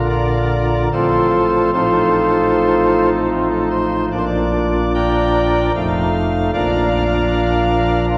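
Serene and reverent, this short classical chorale-style passage for solo pipe organ moves at 75 BPM in an unhurried 3/4 with a rubato feel, settling in Bb major. The nasal cornet stop, voiced in a romantic manner with tremulant, sits up front and spans F1 to G5, tracing a simple Bb, F/A, F7/A, Bb, F7, Bb progression. A lush church reverb surrounds it, heard from further back in the room, and the fragment closes on Bb at 6.5 seconds, lasting 8.2 seconds in all.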